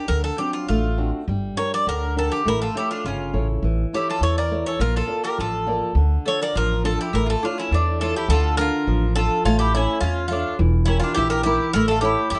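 Bittersweet and cool, this fragment of Greek folk for a bouzouki band moves in a straight duple time and speeds up over its 12.4 seconds. An up-front, metallic bouzouki picks the melody on double strings, some of them octave-doubled, with plate reverb, over fingerpicked flamenco guitar with audible finger squeak and a woody pizzicato upright bass on steel strings, also up front; a bright, picked mandolin adds a soft second line from 2.5 seconds. The production is dark and warm in a moderate studio room, with chords moving through D7, Gm, A and Bb before the later part turns on Dm, A and Edim.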